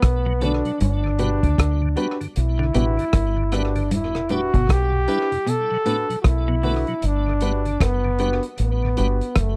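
Warm and laid-back, this roots reggae piece moves at 77 BPM in G major with a swung sixteenth-note feel, cycling through Bm7, Gmaj7 and Em7. A clear, up-front trombone carries the melody through dub echo over a deep, round, foam-muted fingered electric bass and a gritty, saturated breakbeat kit of punchy kick, hi-hat and rim click with tape echo. Beneath them sit a piping tonewheel organ with key click, chorus vibrato and tape echo, twangy, slightly broken-up electric guitar arpeggios with harmonic tremolo that drop out at 6.8 s just before a new section at 7.0 s, and woody upright piano stabs, all captured in a dry, close 1970s-style studio sound.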